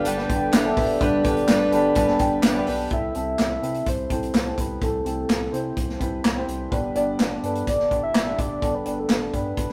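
This hopeful, uplifting piano-driven pop excerpt opens with a dark, woody upright piano up front, a natural country drum kit of punchy kick, snare, hi-hat and handclaps, a round, chorused synth lead carrying the melody, a very quiet mellow French horn section that drops out at 2.6 seconds, and a full-bodied picked steel-string acoustic guitar riff that stops at 2.9 seconds as a piano fill ends, while a deep sub bass sits low beneath and a rough rehearsal-room sound with stone-room reverb and faint mains hum surrounds the band.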